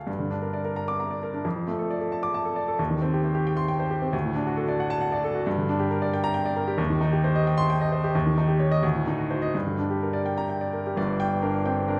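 Heard from further back in a wet recital hall with a 1.5-second reverb, this agitated, passionate excerpt of a classical virtuoso piano study in a rubato 6/8 features a solo baby grand, up front, intimate and natural, with audible action noise and long sustain, spanning its low bass to high treble and pushing through a tense Eb7 to D7b9 turn at 8.1 and 8.8 seconds before settling home at 9.5 seconds.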